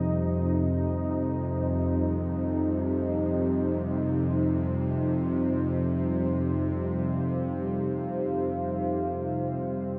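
A bowed-like drone sits up front, its string-like, tense tone built from sawtooth and triangle layers with a noise layer, ring modulation and vibrato, holding low between F2 and C3 for the full 10.0 seconds. Alongside it, a deep, moody ambient pad, also up front, sustains chords reaching from F2 to F5, its detuned sawtooth voices thickened by a sine sub octave and softened with chorus. This dark ambient excerpt moves in free time, centred on a single Cm/F harmony that gives it an ominous, unresolved weight. Both parts bloom with slow attacks and long releases, and a filter sweep shapes the synth drone across the whole passage. A huge, wet reverb with a 7.8-second decay surrounds the sound, leaving the impression of a vast, shadowy space cut from a longer piece.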